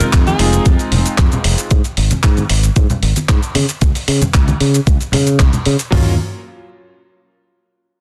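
Nu-disco at 114 BPM in a straight 4/4, cosmic and sleek, this short cut opens on Fm7 with a brief, distant tenor saxophone phrase on Ab4 carrying vibrato and tape echo, while a clangy vintage electric grand piano pumps through analog delay before dropping out at 1.7 s and returning on Ebm9 at 5.9 s. Underneath, a punchy, up-front fingered electric bass runs to 6.2 s, joined by a thumpy 12-bit drum machine with hi-hat, kick and toms, a gritty, compressed soul drum kit adding handclaps, hi-hat and shaker, and ringing congas set back in the mix. The sound is dry and dense, with a heavily limited modern master.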